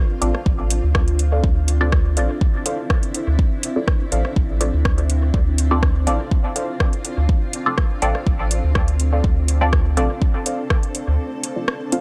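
A cloudy granular pad opens this nocturnal, hypnotic dub techno excerpt, its blurred, detuned chords carrying a bright shimmer of built-in reverb and a vintage 12-bit grit while the sidechain makes it pump. Almost at once, at 0.2 seconds, more of the texture arrives: a muted, dark chord stab colored by phaser and dub echo, and a warbling, lo-fi pluck riff sitting in the background behind chorus and its own echo trails. A round, soft sub bass sits up front with transformer saturation, joined at 0.5 seconds by a deep, layered electronic kick in a small room. A dry analog rhythm box adds overdriven metallic hats and rim clicks, also sent into dub echo. The whole passage rests on a single Dm7 chord, and the gritty hardware recording gives this cut from a longer piece a dusty, late-night haze.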